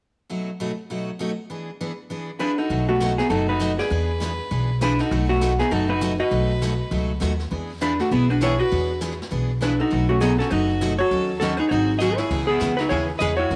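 A dark, clean hollow-body electric guitar with tape echo carries the melody up front in this playful, swinging western swing excerpt at 200 BPM in B mixolydian, over a bright, full-bodied picked acoustic guitar that plays alone from 0.3 seconds until the melody guitar enters at 2.4 seconds alongside a biting bowed fiddle line with light vibrato, followed at 2.7 seconds by a woody, thumpy pizzicato upright bass and a brushed jazz kit with dark cymbals sitting in the background, moving through B7 and E7 changes with a drum fill at 12.0 seconds in a small room with light reverb.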